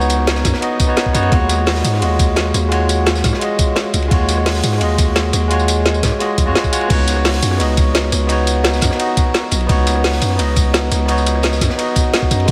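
A barky, bright tine electric piano with tape echo opens this melancholic, rolling liquid drum and bass excerpt at 172 BPM alongside a deep, mellow sine 808-style bass and a layered electronic kit with a woody snare, metallic hats and tambourine, while a dark, saturated breakbeat kit with high-passed cymbals and snare sits in the background and a thumpy, gritty electronic kick arrives at 0.4 seconds, all moving between Db9sus4 and Ebm11 in a dreamy mix soaked in huge ambient reverb.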